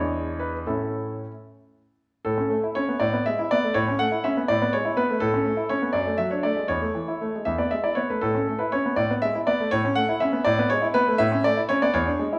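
A clear concert grand piano opens alone on a dominant chord that settles onto the home chord, setting a cheerful, elegant tone in a lilting 6/8 with gently flexible rubato. Cut from a longer classical-period sonatina, the solo piano moves into a new section at 2.3 seconds, alternating tonic and dominant harmonies with a brief turn through the subdominant before a cadence, until it breaks off at 12.4 seconds. Its polished, up-front tone has a deep bass and short sustain, set in a wet recital-hall reverb.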